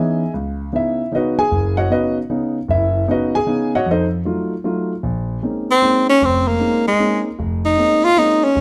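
A dark concert grand piano opens this searching, intense jazz waltz in 3/4 at 154 BPM, swung on the eighth notes, moving from a Badd9 to an F7b9. The piano's mellow, intimate tone carries deep bass and audible action noise, giving the accompaniment a smooth, vintage character. The harmony settles into Bb minor on a Bbm11 chord, and at 5.7 s a warm tenor saxophone enters up front as the soloist. Its close-miked jazz phrasing features vibrato and scooped notes in a middle register, set in a plate reverb, and it sits as the most prominent voice. The room has a moderate studio reverb, and detailed microphones capture both instruments closely in this brief cut from a longer piece.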